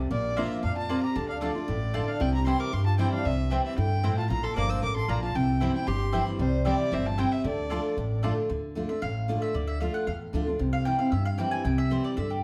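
Heard from further back in a reverberant studio room, this driving, lonesome bluegrass excerpt is cut from a longer piece. Up front, a bright, full-bodied dreadnought guitar picks the accompaniment while an upright bass on gut strings gives a thumpy pizzicato low end, and both carry on through the whole clip. A dark, bowed fiddle with light vibrato sings the melody over chords moving through Bb, Dm and C. Beneath it, a lap resonator guitar played with slide and fingerpicks adds a metallic, nasal second line with slapback echo. A woody, double-strung mandolin plays stabs from 0.4 seconds. Once the fiddle and resonator stop at 8.2 seconds, the mandolin takes a solo from 8.5 seconds to the end.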